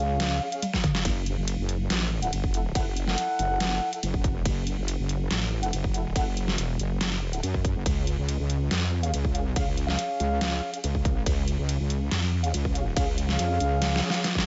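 Heavy wobble dubstep in F# minor at 141 BPM with a half-time feel, this aggressive, chaotic excerpt centres on an up-front wobble bass, a detuned sawtooth-and-sine unison that is saturated and compressed with chorus and overdrive, under mellow, smooth-topped brass ensemble stabs in a tight classical style with light vibrato and dub echo. An up-front, overdriven dubstep kit with a deep snare, hi-hat, ride and toms comes in at 0.2 seconds, joined by a punchy, layered electronic kick at 0.7 seconds, with drum fills at the start and close. The harmony moves from C# to F#m7 and back to C# at 7.9 seconds, all set in light reverb and digital ambience with a dark, rolled-off top end.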